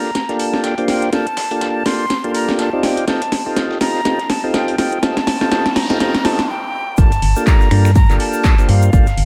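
This deep house excerpt opens with a breathy, bright jazz flute carrying the melody through a tape echo, set over smooth tonewheel organ stabs turning slowly through a rotary speaker and pumping with sidechain compression in G minor, moving from Gm9 to F9 at 2.8 seconds. Two drum kits build the groove at 123 BPM with a 16th-note swing: an up-front house kit of finger snaps, handclaps, cracking snare and metallic hats, and a gritty, sampler-style soul kit with hi-hat, snare and tambourine sitting in the background. The first seven seconds form a build-up with a drum fill, a noise sweep in the background from 5.2 seconds, and a short break before the drop. At 7.0 seconds the harmony returns to Gm9 as a punchy electronic kick and a dark, hollow FM bass with an organ-like, percussive attack arrive up front, the bass pumping with sidechain compression, while a grainy tube shaker adds faint texture behind. 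The mood is smooth and moody, wrapped in a moderate room reverb.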